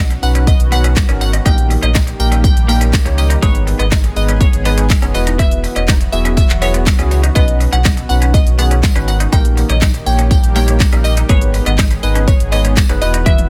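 A digital ambience surrounds this euphoric, upbeat dance-pop passage, taken from a longer piece, moving at 122 BPM in a straight 4/4 and tuned slightly flat to A4 = 439 Hz. Up front, a punchy, layered electronic pop kit of kick, fat snare, handclaps, hi-hat, shaker and toms drives the groove, joined by a deep, full sine sub bass with an added octave whose sidechain pumping gives it a breathing pulse. A bright, twangy twelve-string electric guitar picks a compressed, clean riff through lush chorus, while a tine electric piano with fast tremolo and a combo-amp tone fills in the accompaniment. A glassy, crystalline wavetable pluck carries the melody high above, its ring-modulated, filter-swept tone trailed by digital delay, and a thick, detuned sawtooth pad sustains chords in the background as a close, jingly tambourine sits very quietly in the mix. The harmony cycles through Badd9, D#/A#, G#m and Esus2 before a drum fill at 13.3 seconds closes the passage.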